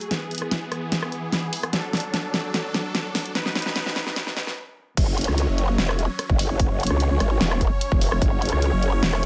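A lightly reverberant, high-pass-filtered mix opens this heavy, chaotic wobble dubstep excerpt in a half-time feel. Huge, bright supersaw chords sustain from the start, their detuned sawtooth unison colored by a phaser, a moving notch and sidechain pumping as a filter sweeps them through a build-up over E, D and B. An up-front big-room dance kit drives that rise with a drum fill on snare, hi-hat, rim click and crash, its huge snare leading the way, before a brief stop at 4.6 seconds. The drop lands at 5.0 seconds on F#5, bringing in a growling, saturated growl bass that wobbles through a formant filter with chorus and overdrive, sitting up front. A punchy, layered electronic kick joins the drop and plays until 8.3 seconds, while the chords and kit carry on to the end of the cut.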